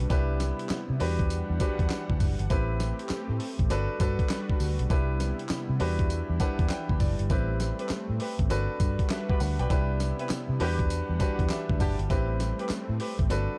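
A swung 100 BPM groove in 4/4 from a gritty, compressed sampler-style drum kit, with thumpy kick, medium-tuned snare, hi-hat, handclaps and tambourine, drives this slick, bouncy new jack swing cut in E minor, alongside a round, punchy foam-muted fingered electric bass up front. A polished, clear grand piano with short sustain comps through a Cmaj7, Em9, Am9 and Gmaj7 cycle and adds fills at 6.1 and 11.2 seconds, while a smooth, detuned sawtooth pad with chorus and a slow attack holds sustained chords underneath. From 7.8 seconds a tight, jazz-style horn section with light vibrato adds dark stabs through digital delay, all in a dry, dark, warm production.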